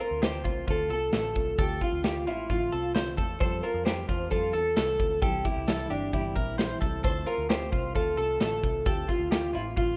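Jangly indie pop at 132 BPM with a bright, youthful mood, this short cut from a longer piece sets a slightly broken-up, picked electric guitar melody from a small old amp over twangy, chorus-treated clean electric arpeggios, a full-bodied fingerpicked steel-string acoustic with audible finger squeak sitting in the background, a round, foam-muted vintage bass entering at 0.1 seconds, and a punchy, up-front rock drum kit of kick, snare and hi-hat, all moving through Dm7, Fadd9 and C in a rough home-demo mix with light small-room reverb.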